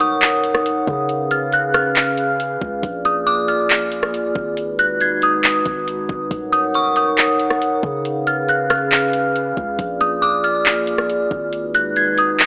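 A half-time 4/4 groove at 138 BPM drives this atmospheric cloud-rap excerpt in Eb minor, its smooth R&B drum kit sitting up front with a knocking kick, metallic hi-hats, handclaps and rim clicks, electronic and tape-warm in tone. Beneath it, a long sustained 808-style bass hums deep and mellow, its sine tone striking quickly and then decaying. A glass harmonica holds pure, glassy chords with a slow attack, pumping against the sidechain and sitting prominently in the mix. Above, a dark detuned synth bell carries the melody with an eerie, inharmonic FM shimmer, thickened by chorus, softened by a low-pass filter and trailed by tape echo. The chords cycle through Ebm7, Db7, Bb7 and Abm7 twice across the 12.5 seconds, setting an ethereal, melancholic mood. A moderate, lush hall reverb lends a digital ambience, while the whole recording carries the narrow, filtered character of AM radio.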